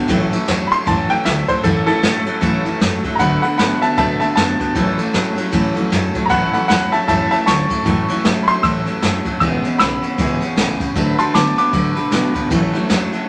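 A swung 4/4 groove at 155 BPM drives this upbeat, rollicking rockabilly excerpt in A major, with brushes on a jazz kit up front (punchy kick, dark cymbals on the ride, medium-tuned snare) and a woody, thumpy pizzicato upright bass on gut strings sitting back in the mix. A full-bodied dreadnought acoustic guitar plays picked accompaniment while a twangy, slightly broken-up electric guitar through a small old amp works a low riff, moving through A6, D6 and E6 chords. From 0.7 s to 12.3 s a brilliant, worn, slightly detuned upright piano carries the melody up front, all set in a moderate studio reverb.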